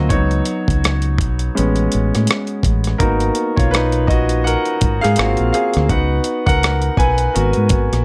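A bright, brilliant concert grand piano takes the lead across the full 8 seconds of this sultry, late-night neo-soul excerpt at 83 BPM in G# dorian, its open, long-sustained voicings moving through C#9sus4, Amaj9, G#m9 and G#13 over a round, punchy, dark fingered electric bass and a gritty, overdriven sampler-style drum kit of thumpy kick, hi-hat and rim click that enters at 0.1 seconds with a swung sixteenth-note feel, all set in light reverb.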